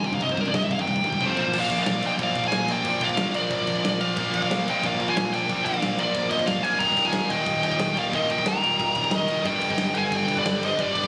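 Heavy metal at 182 BPM in 4/4, heavy and epic, cut from a longer piece: a dark, distorted lead guitar sits up front with a solo that gives way around 1.5 seconds, after a drum fill from 1.2 seconds, to the next section, while a second, brighter lead line joins in the background from 1.2 seconds. Beneath it, three picked rhythm guitars grind out riffs (two bright and high-gain, one of them double-tracked and very quiet, plus a sludgy, overdriven one) alongside a bright, direct picked electric bass and a big-room rock kit with a punchy kick, medium-tuned snare, toms, ride, crash and china. A very quiet, woody, lush bowed string section holds sustained chords with vibrato as the harmony moves from Cm through Bb and Eb to G, all heard through studio reverb and captured on a phone in the room.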